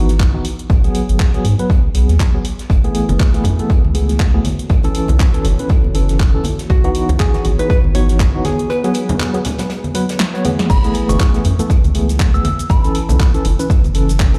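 Deep house at 120 BPM with a swung 16th-note feel, this smooth, hypnotic passage is cut from a longer piece and moves through G#m7, F#m11, B9sus4 and C#m11 chords. A worn, slightly out-of-tune tine electric piano plays stabs through a combo amp with medium tremolo, tape echo and sidechain pumping, over a round, deep analog bass that also pumps and sits loud in the mix. A dry, punchy electronic kick drives the groove up front, layered with an overdriven deep house kit of crash, handclaps, hi-hat, shaker and a punchy snare, while a loose acoustic indie kit with high-passed hats and snare sits in the background. From 2.7 seconds a very quiet, warbling tape-like pad adds nostalgic, lo-fi sustained chords, and bright, saturated congas join shortly after. A dark, hollow-body archtop guitar picks a clean melody with analog delay from 6.7 seconds, a break arrives at 8.7 seconds with a drum fill leading into the return of the main section, and a soft, pure FM bell with chorus and phaser carries the melody from 10.7 seconds. 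The whole mix sounds as if played on a big sound system in a bare room, bathed in large studio reverb.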